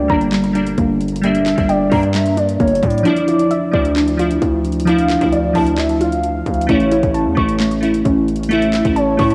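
Glassy, detuned digital keys sit up front from the start, alongside a warbling, dusty pluck playing arpeggios through phaser and tape echo, a smooth gliding lead with vibrato as a second line, and a saturated, aggressive 808-style bass, in this brooding, menacing half-time trap excerpt. A trap kit with a hard-clipped kick, metallic hats and handclaps enters at 0.1 seconds, and its kick drops out briefly from 3.1 to 3.5 seconds as the chords move from Gm to Dmadd9 and then A. Light digital reverb and a lo-fi cassette character give the whole piece a vintage, home-recorded feel.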